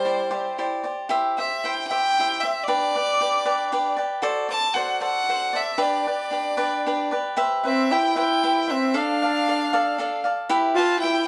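In a straight 6/8 at 76 BPM, this romantic, proud mariachi fragment in C major moves through chords from Cadd9 and C to G, D7, Cmaj7, Dm and Em. A clear, biting violin carries the intense, vibrato-laden bowed melody up front over a bright, crisply picked cavaquinho, while a warm, classically styled solo trumpet with light vibrato adds a second line, briefly at the start and then returning at 7.7 seconds. A small, reverberant room places the listener a little further back, and the piece is cut from a longer performance.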